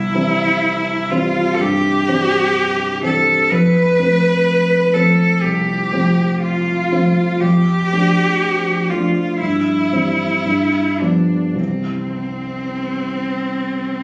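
Lyrical and tender, this romantic classical excerpt for cello and baby grand piano moves in a flexible, rubato 4/4 at 51-63 BPM in C major. It passes from C through F and Dm/F to C/G and G7 before settling back on C at 11.6 seconds. The solo cello sings the melody up front with a rich, focused bowed tone and vibrato, while the piano's dark, mellow, vintage accompaniment carries audible action noise, and both sit in the wet glow of a recital hall heard from within the room.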